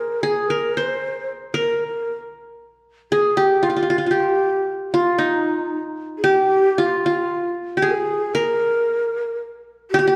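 A moderate recital-hall reverb surrounds this melancholic, hypnotic Turkish makam ensemble excerpt in 7/8, where an up-front, plectrum-plucked qanun with bright-edged triple strings carries the melody throughout while a breathy, mellow end-blown ney with vibrato and a soft attack adds a quieter second line, the music shifting into a new section at 6.0 seconds.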